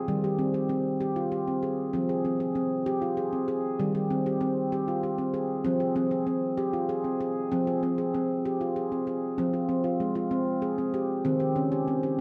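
A lone handpan opens the recording and carries it alone from start to finish, its stainless-steel tone ringing out with bright, sharp finger strokes that sit up front in the mix. This is meditative world music in F minor, moving in an unhurried 6/8 at 64 beats per minute counted in dotted quarters, with a straight, hypnotic feel. The harmony rocks between Eb and Fm every couple of seconds, and the phrases stay within the range from Eb3 to Ab4. At 9.4 seconds the piece moves into a new section before settling back on Eb at 11.2 seconds. A wet concert hall reverb with a 2.1-second decay surrounds the instrument, and the dark, warm production softens the edges of its shimmer. The clip is taken from a longer piece and lasts just over 12 seconds.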